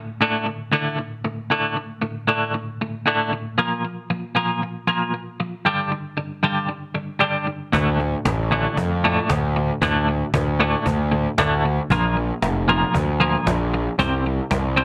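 A twelve-string electric guitar opens this excerpt of quiet-loud alternative rock alone, picking bright, twangy arpeggios through a tremolo effect over chords built on D, Bb and G in D minor. The tempo sits at 115 BPM in a straight 4/4, and the mood is dark and cathartic. At 7.7 seconds a fuzz-laden picked electric bass arrives with a growly, overdriven tone placed up front, joined at the same moment by a snappy cajon played with soft hands, its snares giving a vintage, band-limited edge. The guitar stays clean and compressed as the chords move back to D and then on to Bb and C. Light reverb and a digital ambience frame the sound, and the whole passage runs to 14.8 seconds.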